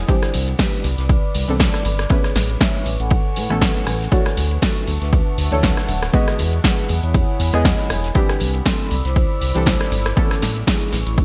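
Soulful and warm, this deep house cut moves at 119 BPM with a swung 16th feel over a cycle of Cmaj9, Amaj9, Dmaj9 and Emaj9. An up-front overdriven electronic kick and a punchy, tape-softened analog drum machine with gated reverb carry the groove, while a damped 70s kit with dark cymbals and a fat snare sits dry in the background. A smooth, gliding sawtooth bass with portamento anchors the low end beneath nasal, filter-plucked chord stabs with chorus and cassette tape colour, a moody detuned pad with chorus and built-in reverb breathing under sidechain pumping, and a mellow soft-mallet vibraphone melody ringing through digital delay, all set in a small room within a bright 1980s-style digital production.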